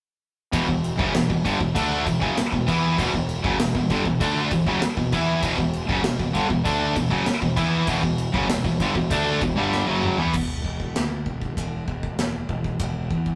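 Two distorted electric guitars lead this heavy metal passage, picked up front in E minor, one with a bright overdrive and the other with a bright, high-gain distortion as they play the riff from E2 to E4. Beneath them, a fingered electric bass with a growly fuzz sits in the background, and a big acoustic rock kit drives a straight 4/4 at 98 BPM with a boomy kick, a medium-tuned snare, toms and bright crash and ride cymbals. The mood is epic and heavy, and a drum fill from 9.7 to 10.3 seconds marks the point where the guitars drop out and the harmony moves from E minor to an E5 power chord. From there, bass and drums carry the closing stretch together until 13.4 seconds. The sound is a rough rehearsal-room capture with tube saturation and a moderate small-room reverb, and the passage is cut from a longer piece.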